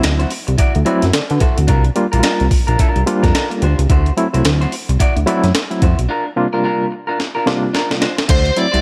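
A strutting, playful funk groove at 109 BPM in 4/4 with a swung sixteenth feel rides on a gritty, sampler-style breakbeat kit with a thumpy kick and high-tuned snare, under a fat, detuned analog bass moving between D9 and C9sus4 chords. A barky, reedy electric piano with overdrive and fast tremolo punches out stabs and a fill from 2.8 to 3.9 seconds, while a slightly broken-up electric guitar plays accompaniment. After a break from 6.1 seconds that includes a drum fill from 7.2 seconds, a nasal, overdriven lead guitar with a parked wah enters at 8.3 seconds, all in light reverb in this short cut from a longer piece.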